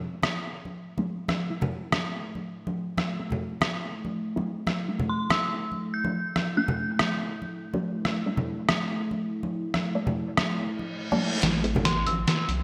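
A gritty, pitched-down sampler-style drum kit sits up front in this meditative, heavy piece of deep dubstep, its compressed hi-hat, rim click and medium-tuned snare carrying a half-time 142 BPM groove with a light swing, wrapped in small room ambience and gated reverb. Ringing acoustic congas play alongside it throughout, while a muted, phaser-treated dub chord stab plucks in the background with lush chorus and dub echo, its filter sweeping. From 1.6 seconds a moody ambient pad in A phrygian fades in with a slow attack, its detuned sawtooth and sub-octave layers given chorus, built-in reverb and a filter sweep of their own. An eerie, inharmonic FM bell appears briefly in a high register, mellow and full-bodied, trailing dub echo through a low-pass filter. Near the end a reverse cymbal and riser lead into a build-up at 11.4 seconds, where a soft, wobbling square-and-sine bass arrives on A minor with a very quiet, overdriven knocking kick beneath a drum fill. 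The whole excerpt is bathed in a lush hall reverb with a bright, 1980s-style digital sheen.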